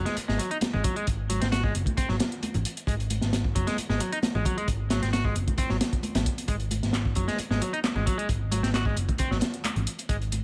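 A bright, clean electric guitar riff with tape echo opens this gritty, raw breakbeat excerpt alongside a round, amped picked bass carrying tube saturation, joined at 0.1 seconds by a dark, saturated, up-front breakbeat kit with a tight kick, a medium-tuned snare and a rolled-off top, a dry analog drum machine adding punchy handclaps and hi-hat, and ringing congas tucked in the background of a small room.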